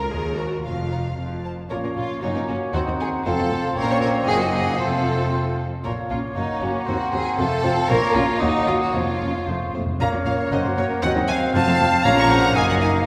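A quick, dramatic and restless classical-period symphony orchestra movement in Bb minor at 116 BPM in 2/4 with a rubato feel, where a rich, expressive violin section carries the melody over violas, cellos and double basses, joined at 0.4 s by a lush second violin line and from 1.7 s by a distant flute ensemble, a close-miked oboe, clarinet and a mellow French horn section holding sustained chords, with a soft-attack bassoon entering at 2.2 s, hard-mallet timpani first sounding at 8.9 s, and a church-like hall reverb.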